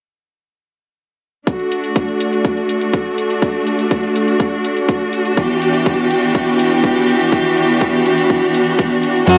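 Italo disco in D major at 123 BPM, this danceable, playful excerpt is cut from a longer piece and tuned slightly below standard pitch, at A4 = 436 Hz. From 1.5 seconds a rich studio string section holds sustained bowed chords with smooth vibrato, moving from D to Em7 at 5.4 seconds. Beneath it, an electronic kick drum gives a punchy, tape-warm thump, with a high-pass filter on both the kick and its small-room re-recording, while metallic electronic hi-hats sit lower in the mix. Only at 9.3 seconds, just before the cut, do a lush symphonic violin section on F#4 and a fat, detuned sawtooth bass on F#2 arrive, the bass carrying a filter sweep and a fast attack. The production is dark, with moderate plate reverb giving the mix a soft tail.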